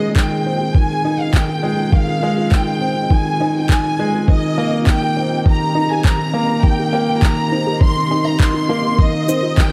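A clear, focused violin section opens this melancholic, moving excerpt of piano and strings electronica, carrying a bowed ensemble melody with vibrato over a woody upright piano riff that sits up front. Beneath them, a cloudy granular pad holds blurred, detuned chords in the background, its slow attack, long release and built-in reverb shaped by sidechain pumping. At 0.2 seconds a thumpy, muffled electronic kick arrives, pitched down, compressed and overdriven, joined by produced handclaps and shaker that carry a small-room character. From 0.5 seconds a very quiet, dark pluck adds warbling lo-fi arpeggios with a chorused, dusty edge. The harmony moves from Fm7 to Cm7 and back to Fm7 across a steady build-up, all wrapped in a moderate echo chamber reverb.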